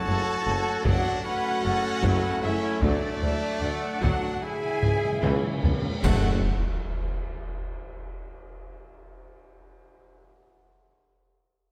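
A distant taiko ensemble struck with heavy sticks drives this relentless, heroic stretch of epic orchestral film score, entering at 0.9 seconds and pounding in a large room at a straight 74 BPM in 4/4, F# minor. Around it, a mellow French horn section holds roomy sustained chords, dark trombones sit tight beneath them, and a trumpet section adds smooth-topped stabs. A rich studio violin section carries the expressive melody in the background, joined by a very quiet, lush symphonic violin section on a second line, while an airy flute section with crisp attack traces another second line and bowed violas fill in the accompaniment. The low end comes from intense cellos, smooth double basses and a vintage-toned tuba, with round, soft-mallet timpani sounding underneath. Bright, close cymbals, clash cymbals and concert bass drum join at 2.8 seconds as the harmony moves from F# minor through D and C# minor, and timpani and drum fills build to a band accent on the return to F# minor, where a huge, dark impact lands at 6.2 seconds and rings out in the moderate scoring-stage reverb of this cut from a longer piece.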